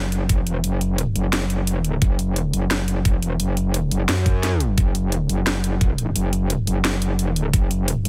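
Aggressive and mechanical, this short cut from a dark technical drum and bass track runs at 174 BPM, driven by a metallic, wobbling FM bass with saturated overdrive, chorus and sidechain pumping from 0.0 seconds, joined by an overdriven kit of cracking snare and bright hi-hats and a knocking, layered electronic kick, all held dry and up front.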